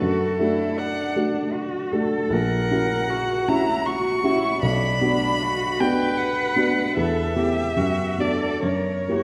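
A slow, romantic movement for piano trio begins at once with all three players together, a lyrical and serene fragment cut from a longer piece. The pulse sits around 78 BPM in 3/4, with uneven beats and rubato giving the phrasing a breathing, unhurried quality in B minor. Up front, a single bowed violin carries the melody with a warm, focused tone, vibrato and a smooth top. Beneath it, a solo cello sings a second line in a rich, even voice with vibrato, set more distantly in the sound. The baby grand piano supplies a dark, mellow accompaniment with short sustain, also placed close. The harmony moves from D/F# through F#7/A# to Bm at 4.6 seconds, then closes on F#7b9, all bathed in a wet scoring-stage reverb heard from further back in the room.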